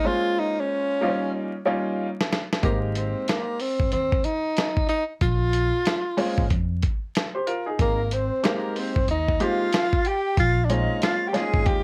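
Swung sixteenths at 93 BPM in 4/4 give this smooth, warm jazz-hop excerpt in Ab major a relaxed sway. A breathy, close-miked tenor saxophone with vibrato and slapback echo sings the melody up front over clear grand piano chords. Gritty, compressed sampler-style drums with a thumpy kick arrive at 2.2 seconds, woody pizzicato upright bass joins at 2.6, and a soft-attack metal flute adds a quiet second line in the background from 7.8, all wrapped in light reverb, vinyl crackle and the warbling pitch drift of old cassette tape.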